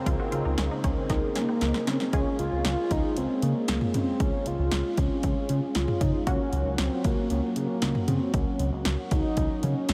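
Wistful and nostalgic, this synth-pop excerpt moves at 116 BPM in Db major, with a punchy, overdriven analog drum machine and a glossy, dark chorused synth bass driving under a nasal, funky polysynth comp, all bathed in a dreamy, reverb-soaked mix. A very quiet brassy pad and a squelchy resonant blip pluck with delay appear only briefly at the start, before a drum fill at 1.1 seconds leads into the main section at 2.1 seconds. A round, horn-like synth lead with vibrato carries the melody from 1.4 seconds onward.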